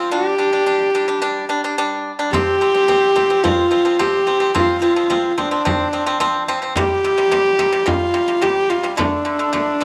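A husky, nasal horsehead fiddle carries the melody from the opening moment with light vibrato, portamento and an airy bow, while a dry, percussive pipa plays fingerpicked arpeggios beneath it, both up front in this vast, solemn passage of Mongolian folk music cut from a longer piece. At 2.3 seconds a small, compressed frame drum enters with hard hands and a saturated, bright edge. The whole piece sits in a small room with a moderate echo-chamber reverb.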